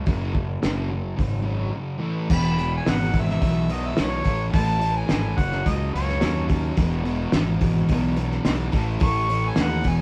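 A clear, overdriven harmonica with light vibrato takes the melody at 2.3 seconds, riding over a rowdy, swaggering garage rock groove at 108 BPM in a straight 4/4. Beneath it, a thick, dark fuzz guitar, double-tracked and picked, churns out a riff on F#5, A5 and E chords, while a fingered electric bass adds overdriven, tube-saturated weight and a cloth-damped drum kit thuds in with a fat snare, tight kick and muffled, dark cymbals. The band sounds live in one studio room, the lo-fi, gritty drums and fuzzy low end sitting up front in this section cut from a longer piece.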